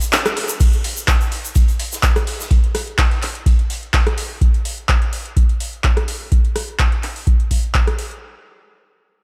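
An overdriven analog drum machine opens this trippy, hypnotic house excerpt with metallic hats, handclaps, rim clicks and crash, sounding from the start alongside a dark, gritty acoustic kit in the background with a pumping, filtered hi-hat and a filtered snare, and a grainy, distant egg shaker, before a deep, overdriven electronic kick arrives up front at 0.6 seconds and drives the swung groove through a small, lightly reverberant room.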